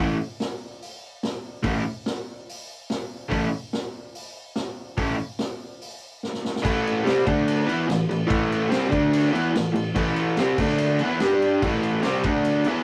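A straight, driving four-beat pulse carries this swaggering, rowdy garage rock fragment. An up-front, double-tracked overdriven electric guitar picks a raw riff that shifts through A5, D5, E5 and G5 chords after 6.6 s. A vintage acoustic drum kit with a punchy kick, high-tuned snare, dark cymbals and a rolled-off top enters at 0.4 s and plays a fill just before that change, all in a rough rehearsal-room sound with moderate booth ambience.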